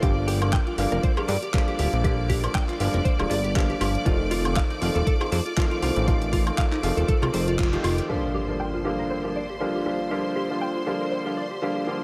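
Nu-disco at 119 BPM in 4/4 with a light 16th-note swing, this groovy, cosmic excerpt sits in G minor and moves from Gm7 to F7 before returning to Gm7. A clear, worn grand piano carries the accompaniment up front with long sustain, pumping under sidechain and trailing a diffuse ambient delay, while a bright, lush violin section holds intense bowed chords with vibrato that also breathe with the pump. A direct-recorded clean electric guitar plays a picked riff coloured by ensemble chorus and delay, and a fat, detuned sawtooth bass with a plucky filter attack anchors the low end until 8.0 seconds. An overdriven, knocking electronic kick and a layered pop kit of handclaps, hi-hat and woodblock drive the groove alongside a saturated cowbell tucked in the background, with the band hitting an accent at 7.6 seconds. At 8.1 seconds an electronic impact lands as the drums and bass fall away, and a filter sweep moves through the piano while the strings and guitar continue in a dreamy plate-reverb haze.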